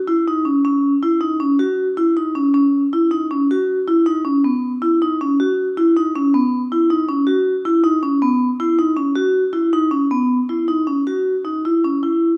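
Lightly reverberant and up close, this restless, pensive fragment of a contemporary instrumental piece features a solo vibraphone struck with medium hard mallets, its metallic, ringing, airy tone shimmering with slow motor vibrato as it moves within a narrow B3 to F#4 range in a straight 5/4 at 158 BPM, shifting to a new section at 11.1 seconds.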